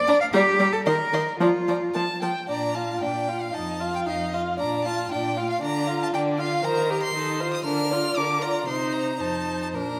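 In a quick 2/4 at 115 BPM, played with flexible rubato, this lively, spirited classical-period movement for string quartet in Bb major is heard as a passage from a longer piece. The focused, close first violin carries the bowed melody high above the second violin, whose portamento, soft attack and vibrato give its line an expressive, warm glow, while the rich viola fills out the accompaniment and the clear, even cello anchors the bass from 0.0 s, both smooth, bowed with vibrato and sitting up front. A wet recital-hall reverb surrounds the quartet, and a new section begins at 2.5 s, moving through F7 and Dm before arriving on F7 at 9.2 s.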